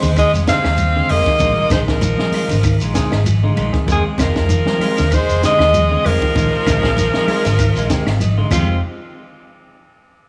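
Driving and defiant, this afrobeat excerpt at 97 BPM in F dorian puts a bright, forceful alto saxophone melody up front over a raspy, gritty tenor saxophone second line, with a round, foam-muted bass and a compact cocktail kit with a punchy kick and high-tuned snare anchoring the groove, while a chorused clean guitar plays arpeggios, a hollow-body guitar with vibrato adds stabs, a barky, lightly overdriven electric piano through spring reverb comps and fills from 7.6 seconds, and damped congas, grainy shekere and distant woody claves fill out the percussion over a vamp between Fm7 and Bb7sus4.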